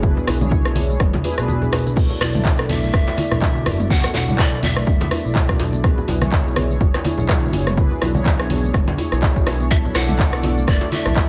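A punchy electronic kick drives this swung, hypnotic afro house groove, backed by a layered deep house kit of dark hats, handclaps, rim clicks, shaker, toms and crash, all with a small-room character. Soft-handed congas sit close and dry in the background, while a tight, cracking, saturated djembe adds a very quiet edge. Underneath, a smooth gliding synth bass with portamento pumps against the kick, and a deep, moody analog pad holds slow-attack chords that alternate between E7 and Bm11. A woody kalimba rings out airy arpeggios with dub echo, and mellow, brassy synth stabs carry detuned chorus, vibrato and a gritty vintage sampler texture. After the kick drops out briefly at 1.5 s, a breathy, unsteady bamboo pan flute with vibrato enters at 2.2 s and returns at 9.7 s in this driving excerpt from a longer piece.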